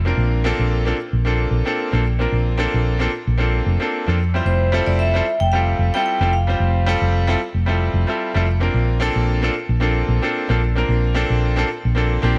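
A hollow-body, short-scale electric bass opens this relaxed, blissful sunset chillout excerpt, its fingered tone dark, round and amped as it sits up front in the low register. A brilliant grand piano joins almost at once in the middle range, intimate and close, with audible action noise and a touch of delay. The groove moves at 112 BPM in 4/4 with a gentle swing on the sixteenths, resting on Fmaj9 in F major before shifting to Bbmaj9 at 8.7 seconds. Between 4.5 and 7.4 seconds a vibraphone struck with hard mallets carries a brief melody above the piano, its metallic, ringing notes airy with the motor off and trailed by delay. Light reverb gives the short passage a soft sense of space.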